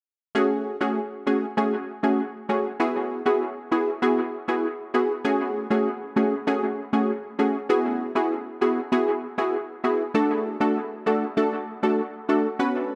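A punchy, detuned chord stab of sawtooth and square wave sits up front with a fast attack, filter pluck and chorus, cycling F#madd9 and Eadd9 before landing on D at 10.1 seconds in this hypnotic, tough dancehall excerpt at 98 BPM in F# minor, its decaying hits trailed by dub echo inside a moderate echo-chamber reverb.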